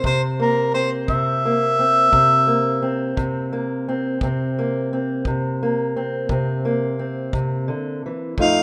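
A rough home-demo sound wraps this short cut from a longer piece in a moderate, lush hall reverb that lingers for about 2.4 seconds. It is swaggering, rollicking acoustic country blues in 12/8 at a slow 58 beats per minute, sitting on a C7 chord in C mixolydian for its whole 8.6 seconds. A mellow harmonica carries the melody from the start, playing jazz-style solo lines with scooped notes, its tone roomy and slightly distant. Beneath it, a fingerpicked steel-string parlour guitar plays the accompaniment with a dark, boxy voice, sitting up front in the mix. A kick drum with a natural, punchy studio-room sound and a touch of brushes supports them quietly, stopping at 8.5 seconds just before the others.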